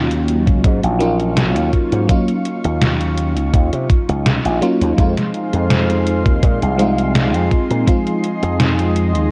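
Vaporwave at 83 BPM in Eb dorian, woozy and melancholic, this excerpt moves from Ebm9 to Fm7 at 5.0 seconds as a dreamy FM electric piano with a soft pad layer, coloured by phaser, lush chorus, 12-bit sampler grit and tape echo, plays accompaniment over a thick, warbling unison pad of slow-attack sustained chords, while a bright, punchy slap bass with an envelope filter and tube saturation sits up front alongside an overdriven, detuned 8-bit drum machine of hi-hat and snare with gated reverb, entering at 0.1 seconds, and a thumpy, tape-warm electronic kick that plays from 0.5 to 8.0 seconds, all in a cassette-tape sound with light reverb.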